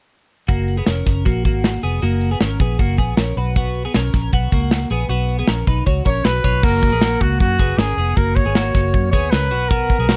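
Bright and breezy, this jangly indie pop excerpt moves at 156 BPM in F# major, with a twelve-string electric guitar picking clean, twangy arpeggios under a subtle chorus while a dark, foam-muted fingered bass and a polished, tight-kicked acoustic drum kit hold the groove from 0.5 seconds. At 6.1 seconds a warm trumpet takes the melody, its punchy, scooped notes carrying light vibrato and a roomy, distant character. The whole recording is dry and close, in a 1970s studio style, as the chords shift from F# to Bsus2 and later settle on B5.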